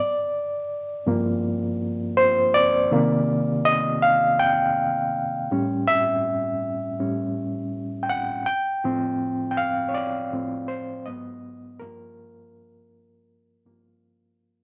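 R&B with a sultry, late-night mood and a swung sixteenth-note feel, played by a lone overdriven reed electric piano, barky and gritty through a combo amp with fast tremolo, sitting up front in a large studio reverb as it moves from Gm7 through Cm9, A7 and Dm7/A, touching Abm7 before settling back on Gm7, while fading out from 2.9 seconds to the end at 14.6 seconds.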